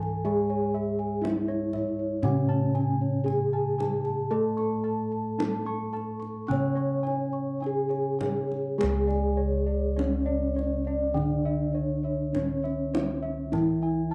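A straight four-beat pulse sets a stately, shimmering mood in this Javanese gamelan passage, cut from a longer piece. Its melody rings out on a soft bronze metallophone struck with padded disc mallets, its paired tuning giving airy, shimmering beats. Beneath it, a second metallophone plays a ringing accompaniment with a wooden mallet, while a third, mellow and airy, adds high arpeggios alongside up-front, round-toned bossed gongs. A boxy, warm set of bossed gongs holds the bass, and a tight kendang played with hard hands sounds distant, as if in a large room, until 13.8 seconds. Everything sits within a dry, close 1970s-style studio sound with light reverb, moving into a new section at 8.8 seconds.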